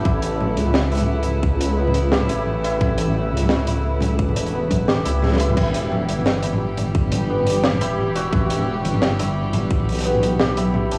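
A swung, half-time drum and bass groove drives this spacious, brooding piece. It is built on a crunchy breakbeat kit with dim cymbals, a high-tuned snare and toms, saturated and gritty with a rolled-off top, layered with a tight, tape-warm electronic kick, both up front. A deep, rumbling detuned saw bass beats beneath them, sustained and shadowy. Rich chamber strings hold earthy bowed chords with light vibrato, colored by 12-bit sampler grit, cassette tape and sidechain pumping. Meanwhile a bright hammered santur spins shimmering, ringing arpeggios through the same grit and tape plus an analog delay, and a very quiet metallic, inharmonic FM drone adds an eerie, chorused haze. The kick drops out at 5.2 seconds for a drum fill, and at 5.6 seconds the harmony moves from Aadd9 to Em, the mix sitting in light reverb and small-room ambience with the feel of a home cassette recording.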